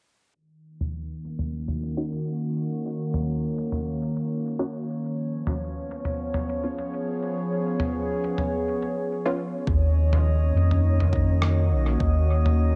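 Echo-heavy and filtered, this spacious, deep ambient dub excerpt in Eb minor at 103 BPM sets a warbling, nostalgic tape-like pad and a muffled, pitched-down sampler-style kit of rim clicks and toms under a filter sweep, adds a muted, detuned dub chord stab with dub echo from 2.0 seconds, then at 9.7 seconds brings in a round, up-front sub bass and an overdriven electronic kick, joined moments later by a glassy texture of drifting overtones.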